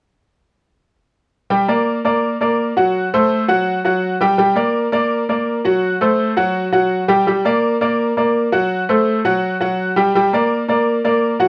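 A straight 4/4 Latin groove at 167 BPM drives this fiery, danceable fragment in G harmonic minor, where a clear, up-front grand piano with long sustain plays alone from 1.5 to 11.5 seconds, alternating between Gm and F#dim under light reverb and the warbling pitch drift of a worn old cassette tape.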